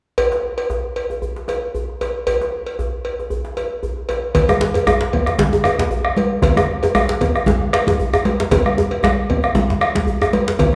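A round, up-front bombo anchors this festive, powerful West African drum ensemble piece, arriving at 4.3 s with a vintage, band-limited body. It opens with only a metallic cowbell and a tight, cracking djembe with metal rattles, both played in a live room and carried on lightly swung sixteenths in 4/4. At 4.3 s the congas join alongside the bombo, their thick skins medium-tuned and struck with soft hands for a mellow, aged tone. A second djembe follows at 4.5 s, played with hard hands, compressed and saturated so its crack sits forward in the mix. The whole ensemble rings in the wet reverb of a recital hall or church, and this fragment is cut from a longer performance.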